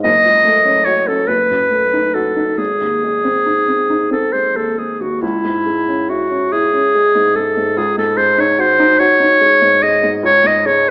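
A slow, rubato 6/8 at 44-50 dotted-quarter beats per minute sets a solemn, yearning mood in this romantic classical duo in C# minor, cut from a longer piece. A bright, close-miked clarinet carries the melody up front with a soft attack, while a dark, mellow baby grand piano offers intimate accompaniment with short sustain and audible action noise, moving from F#m through G# to C#m. A moderate recital hall reverb surrounds the pair, and the whole sound carries the narrow, lo-fi colour of AM radio.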